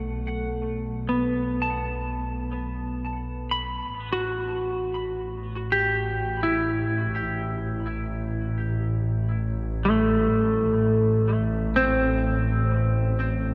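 A semi-hollow electric guitar and a bowed double bass section fade in together, the guitar picking bright, clean arpeggios colored by subtle chorus and tape echo while the basses hold a lush, smooth low line with vibrato. This reflective, melancholic ambient fragment in A dorian drifts in free time from a B5 chord to A minor at 3.9 seconds, both parts sitting up front in a dark, warm production inside a cathedral reverb that lingers for six seconds.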